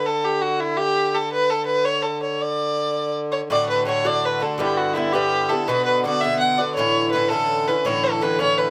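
Cheerful and rollicking, this Celtic jig fragment in 6/8 opens with a single dark, woody bowed fiddle carrying the tune with light vibrato over a steady reedy single-reed accordion drone, its dry tuning sounding clear just behind the melody. At 3.5 s the tune repeats and a picked Irish bouzouki joins up front, its metallic double strings giving a mellow chordal bed that moves from D through Em and Bm to A. Close, detailed miking and light reverb keep the small ensemble intimate and crisp.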